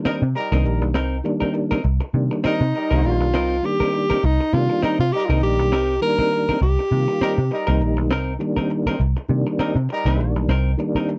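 A swung sixteenth-note funk groove at 101 BPM in 4/4 rides a single C minor seventh chord, cool and funky in this short excerpt from a longer piece. A dark, round, foam-muted picked bass sits up front beside mellow tonewheel organ stabs coloured by chorus vibrato and a slow rotary speaker, while a clean, compressed hollow-body jazz guitar adds accompaniment and a distant, roomy horn section plays a second line. From 2.5 to 7.8 seconds a breathy, close-miked tenor saxophone carries the melody, all in a dry, close 1970s-style studio sound.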